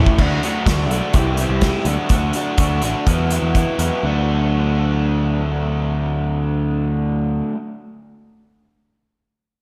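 A growling, bright picked electric bass drives this upbeat, wistful indie rock excerpt at 124 BPM in D major, set against a loose indie drum kit whose acoustic shells sit up front with a punchy kick, a medium-tuned snare and pumping small-room character until 3.9 seconds. Two overdriven guitar riffs run through the whole clip: a dark, compressed one dressed in lush chorus, slapback echo and analog delay, and a raw, lo-fi garage guitar with its own slapback. A lush hall reverb gives the mix a big arena sound as the chords move from D through C and Esus2 back to D at 4.0 seconds.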